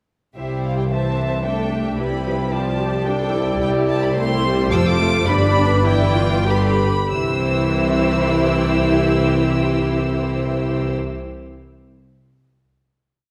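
At 0.4 s a string orchestra enters together in a cheerful, lively classical-period movement in triple time, with the violins carrying a high, intimate bowed melody over a second violin line, an up-front viola section with vibrato sustaining independent inner chords, and cellos and double basses holding a sustained bass with passing notes, every section bowed sul tasto with soft attacks, before the music slows from 2.8 s into a final chord held from 7.1 s in a wet scoring-stage reverb heard from further back in the room.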